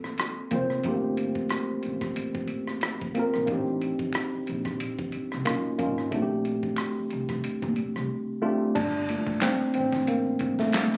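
R&B and neo-soul in a smooth, introspective mood, this short cut from a longer piece sets a worn, slightly out-of-tune tine electric piano up front over woody pizzicato upright bass and a gritty, overdriven sampler-style boom bap kit with a thumpy kick, with egg shaker and finger snaps joining close and dry at 3.5 seconds, all heard as if captured on a phone in the room with club reverb, before a silent gap at 8.1 seconds gives way to a brief electric piano solo from 8.8 seconds.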